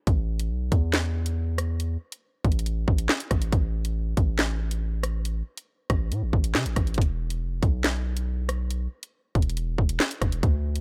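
Menacing and dark, this half-time drill cut at 139 BPM sets an electronic, up-front drum kit of hard-clipped kick, sharp snare, bright hi-hats, rim clicks and handclaps with a tape-warm edge over a deep, long, sine-toned 808-style bass with a fast attack and decaying tail, running from 0.1 to 10.8 seconds in a digital ambience.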